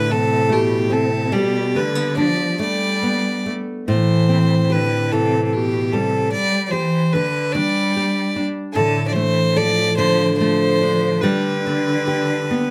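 A fiddle, cello and fingerpicked nylon-string guitar begin together in a mournful, longing Celtic slow air, moving freely in rubato at about 48 BPM in 6/8 over a harmony that circles between A minor and G. The earthy fiddle sits up front and close with a biting tone and airy bow as it carries the melody, while the single cello adds a focused, vibrato-rich second line beneath. The classical-style guitar, also up front, supplies warm accompaniment, and all three play live together in a moderately ambient studio room for this 12.7-second cut from a longer piece.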